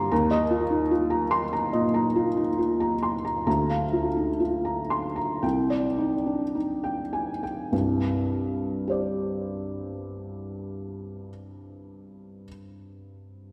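A felt-muted upright piano plays alone in this wistful, reflective passage of neoclassical minimalist piano, its mellow, boxy tone sitting up front with audible action noise. Rubato in 4/4, it slows through the opening 7.7 seconds as the harmony moves from Ebsus2 through Bb/D to Cmadd9, then turns to a new section at 7.7 seconds on Csus2. A wet reverb from a church or concert hall surrounds this short, intimate passage taken from a longer piece.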